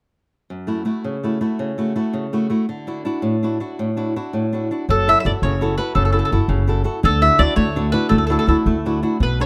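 Picked on round, double-strung courses, the mandolin carries a wistful, romantic melody up front from 4.9 seconds in this cut from a longer Italian folk serenade in F# minor, set in a straight 6/8 at 111 BPM counted in dotted quarters. Before it, a fingerpicked flamenco guitar opens alone at 0.5 seconds with a warm accompaniment moving between F#m7 and Dadd9. A woody, thumpy pizzicato upright bass on steel strings joins the mandolin, all three parts close and present in a small room's light reverb with a rough home-demo quality.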